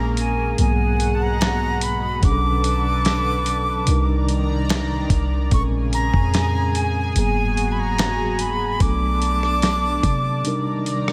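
Contemporary R&B with a moody, longing feel, this short passage drifts over a straight 4/4 groove through minor ninth chords that slide between Bbm9, Abm9, Bm9 and Cm9. An airy silver concert flute carries the melody high in its range, its vibrato and soft attack trailed by tape echo. A mellow tine electric piano supplies the accompaniment through its built-in speakers, while a chorused pulse-width pad holds shimmering, retro sustained chords underneath with a slow attack. A deep, boomy 808-style bass with a clean sine tone and fast, decaying notes anchors the low end, and a gritty, compressed sampler-style soul kit enters at 0.2 seconds with a thumpy kick, medium-tuned snare, rim click and hi-hat. The bass and kick drop out at 10.4 seconds, and the whole dreamy mix is soaked in a moderate church reverb.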